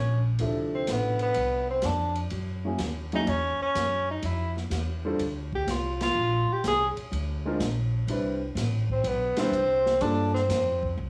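Relaxed and playful, this short cut from a longer small-group swing and bop jazz piece moves at 125 BPM in C major with a swing feel. A mellow tenor saxophone carries the melody up front with a subtone, scooped notes and a distant, roomy character, over woody pizzicato upright bass on steel strings, an upright piano with long sustain, and an open drum kit with dark cymbals and a boomy kick; the saxophone, piano and drums carry a cassette-tape color. The band hits accents at 5.9 and 9.3 seconds as the chords pass from Dm9 through F#9, F5, Bbadd9 and Cmaj9 to Gm7, all set in a small home room with light reverb.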